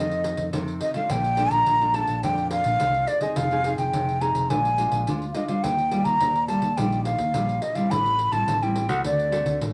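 A breathy, hollow jazz flute carries the melody of this short samba-and-choro cut up front from the very first moment, with vibrato, soft attacks and lifted highs between D5 and B5. Beneath it, from the same opening instant, a full-bodied nylon-string guitar is fingerpicked in a classical manner, while a growly, punchy fingered electric bass sits in the low register with a bright, directly amped tone. A jingly pandeiro, played with hard hands in a small-room sound, joins at 0.1 seconds in straight 4/4 at 106 BPM. The harmony moves through F7, Bbmaj7, Fm7, Bb7 and Ebmaj9 before turning to Am7 and D7, giving the passage a yearning, nostalgic mood. A moist studio ambience surrounds the ensemble, and the fragment is lifted from a longer piece, ending at 9.7 seconds.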